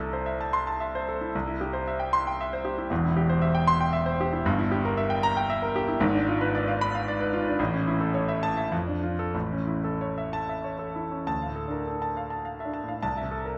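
A clear, up-front concert grand piano with deep bass and a natural tone carries this brooding, bittersweet romantic character piece alone in 3/4, moving with rubato between 91 and 121 BPM, settling into D minor from 4.4 s, passing through diminished harmonies toward A and D minor, and shifting into a new section at 11.3 s, all bathed in the wet reverb of a recital hall in a short cut from a longer piece.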